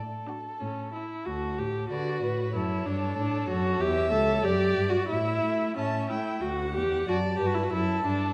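A reverberant recital hall with a softened top end frames this spirited, graceful excerpt from a quick classical-period string quartet movement in D major, moving at 93 BPM in a straight 2/4. From 0.0 s the first violin carries the melody with a warm, even, distant tone and vibrato, while the focused, close cello grounds the bass. From 0.3 s the second violin adds an expressive line with vibrato and portamento, and the up-front viola, rich with a smooth top, fills in the accompaniment as the harmony moves from D over A through F#m7 and A7/E to close on Em11/F#.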